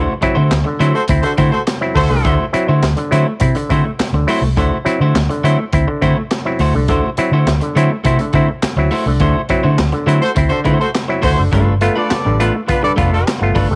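A straight 4/4 funk groove at 103 BPM drives this energetic, gritty clip cut from a longer piece, with a crunchy breakbeat kit of high-tuned snare, tight kick, hi-hat and handclaps, its saturated, dark sound rolled off at the top. Beneath it, a vintage muted fingered electric bass sits loudest in the mix, round and foam-muted, while an up-front auto-wah clav cuts in with percussive, stringy stabs through a combo amp. An electric guitar at the edge of break-up fills in the accompaniment with a picked, compressed, slightly broken-up tone. A clear horn section with pop-style vibrato carries a second line, entering at 0.9 s and returning at 10.2 s. The tune sits in D mixolydian, tuned to A4 = 438 Hz, and rides a D9 chord before moving to G9 at 11.5 s, with band accents punctuating the opening and the stretch before that change. The small room reverb and cassette-tape home recording lend the whole a lo-fi grit.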